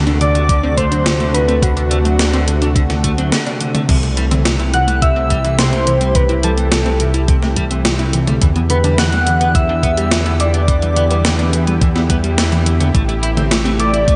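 Set in light reverb and digital ambience with a softened top end, this moody, nocturnal synthwave excerpt moves in a straight 4/4 over a D7, C6, Em7 and Am7 progression. A thumpy electronic kick and a gated 80s digital drum machine, with gated-reverb snare, hi-hat, toms and crash, play alongside a fat, detuned analog sawtooth bass sitting up front, while a lush unison pad pumps with sidechain compression and a very quiet, punchy unison pluck spins arpeggios. A velvety, wave-folded synth lead with vibrato carries the melody, as a dark, clean picked electric guitar riff with tape echo and a dreamy FM electric piano with phaser and a soft pad layer float in the background.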